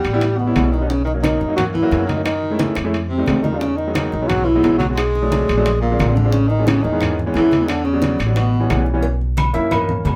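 A dark, folk-style duduk carries the melody in this danceable, sophisticated Afro-Cuban jazz excerpt, its vibrato and scooped notes sounding distant and roomy under a plate reverb. Beneath it, a bright tenor saxophone with a soft attack and jazz vibrato plays a second line, both parts falling silent at 8.8 seconds. A clear concert grand piano, intimate and polished with audible action noise, deep bass and long sustain, accompanies over rich chords such as Bmaj7, F13 and A#9, then takes a short solo from 9.0 seconds. Up front, a woody, thumpy pizzicato upright bass on steel strings holds the low end at a brisk 177 BPM in 4/4 in B major. The percussion fills out the groove, with low-tuned, hard-handed congas and bongos with cowbell, ringing metal-shell timbales with agogo bells, and close, dry claves, and a drum fill arrives between 2.3 and 3.6 seconds. The whole band is heard from further back in a club room with a short, wet reverb, and the piece runs to 10.2 seconds.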